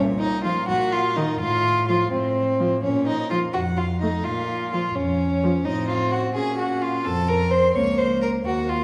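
A restless, dramatic string quartet movement in B-flat minor opens with violins and cello together, moving at a quick 85 BPM in a rubato 6/8 that is cut from a longer piece. The second violin sits up front with a gut-string, period-style tone, carrying its line beneath a melody played by the first violin, whose rich, lightly vibrato sound stays in the background. The cello is close and up front on the bass, its reedy voice anchoring harmonies that pass through minor chords and darker dominant colours such as F7b9 over A. The viola enters at 0.4 s with a smooth-topped accompaniment and a touch of vibrato, filling out the middle of the texture. A wet recital hall reverb places the listener further back in the room, giving the whole ensemble a resonant, dramatic frame.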